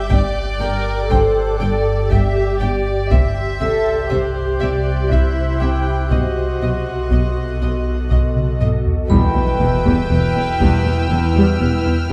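A deep, rumbling drone sits up front in this uneasy, ominous suspense cue from a film score, its warbling low tone wrapped in reverb beneath a mellow, ethereal pad, a lush, woody viola section and soft sul tasto violins carrying the melody, second line and a high texture, with cellos and double basses bowing in the background. A metallic vibraphone, struck with hard mallets, rings faintly through the slow triple-metre pulse while a saturated taiko ensemble keeps time and leads into a drum fill. At 9.1 s an impact lands as a thumb-plucked harp riff and a huge sub drop join, all set in a moderate scoring-stage reverb with a dark, warm production.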